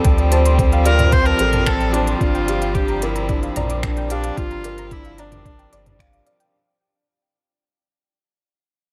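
This short piano and strings electronica excerpt opens at the drop, with a muffled, thumpy kick, a deep sine sub bass and a rich string quartet's bowed chords all sounding together, the strings and bass breathing with sidechain pumping. A felt-muted upright piano plays a riff in a soft, dark, vintage tone, its action noise audible and its notes trailed by delay. Behind them, an organic electronic kit adds finger snaps, crisp hi-hats and toms with a gritty overdrive, while a round, gentle pluck traces arpeggios in the background through subtle chorus, delay and pumping. From 0.9 seconds a single viola carries the melody, played close and intimate with light vibrato and an airy, sul tasto bow. At a steady 111 BPM in straight 4/4, the harmony moves from Dm7 to Gm7 at 2.2 seconds, and the hypnotic, moving passage fades out within its short span, set in light reverb and a digital ambience.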